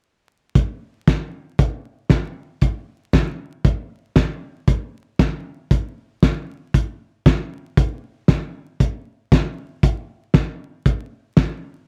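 A dark, warm production with vinyl crackle and light reverb gives this short indie pop excerpt a youthful, nostalgic glow. The only part is a cloth-damped acoustic drum kit, set up front in a small room, playing hi-hat, kick drum and snare drum at 116 BPM in a straight 4/4. Its muffled, thuddy, lo-fi tone pairs a fat snare with a tight kick, and the saturated, gritty grain and rolled-off top keep it soft at the edges. The kit enters at 0.6 seconds and carries the opening section before a second section begins at 4.7 seconds, stopping at 11.5 seconds as the clip, cut from a longer piece, draws to its close.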